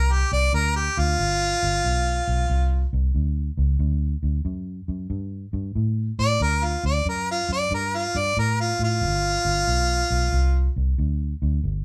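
A swung shuffle feel drives this rollicking, gritty electric blues excerpt, where an up-front, overdriven harmonica takes a bright, close-miked jazz-style solo with light vibrato, soft attacks and scooped notes until 10.7 seconds, over a dark, round, foam-muted vintage electric bass that carries on to 11.8 seconds through G7 and D chords in a small room that sounds like a band playing live together.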